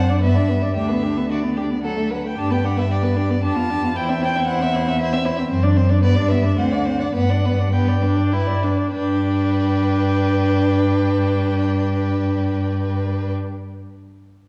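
Graceful and cheerful, this quick classical-period movement for string quartet in triple time is cut from a longer piece, with a clear, lightly vibrato-tinged first violin carrying the melody over a second violin's rich, focused second line, a viola's accompaniment and an up-front, close cello bass, the pace slowing between 4.7 and 8.9 seconds before a new section arrives at 8.9 seconds, all heard through a wet scoring-stage reverb, small room ambience and the warbling pitch drift of worn old cassette tape.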